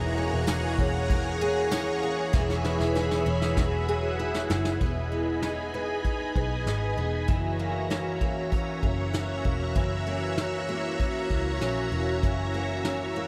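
Dream pop at 97 BPM in a straight 4/4, dreamy and blissful, where a shimmering, octave-doubled twelve-string acoustic guitar plays bright arpeggios up front through analog chorus and delay over sustained, slow-attack sawtooth string-machine violins with ensemble chorus, a dark, round, foam-muted vintage electric bass, a soft brush drum kit with punchy kick and tambourine entering at 0.5 seconds and playing a fill from 2.3 seconds, and a very quiet, mellow vibraphone with slow motor vibrato that stops at 3.8 seconds, all bathed in a huge ambient reverb as the chords move from F#add9/E through C#m7/E and Eadd9 to Emaj7 and F#7 in this short excerpt.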